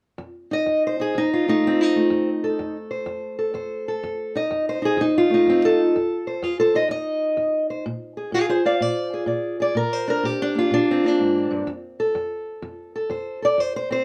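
Laid-back and rollicking, this short acoustic country blues excerpt at 126 BPM swings in 4/4 through F mixolydian, as a lone fingerpicked steel-string parlour guitar, dark, boxy and up front, moves from F7 to Bb7 at 7.9 seconds and settles on F at 11.7 seconds, captured by close, detailed microphones in light reverb.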